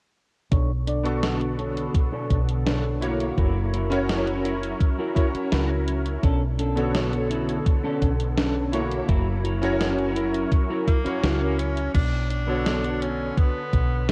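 Vaporwave at 84 BPM in B minor, nostalgic and hazy, cut from a longer piece and steeped in worn, warbly cassette tape drift as the chords move between Bm9 and F#7. A thumpy electronic kick sits up front beside a gated 80s drum machine's crash, hi-hat and gated-reverb snare, while a round fretless bass, a clangy electric grand piano with long sustain, a silky string machine in the background and a dark, clean semi-hollow guitar riff with lush chorus, tape echo and a filter sweep fill in from the opening seconds. At 10.9 s a punchy, distant tenor saxophone with 12-bit sampler grit takes the melody, and the guitar and strings drop out by 11.9 s.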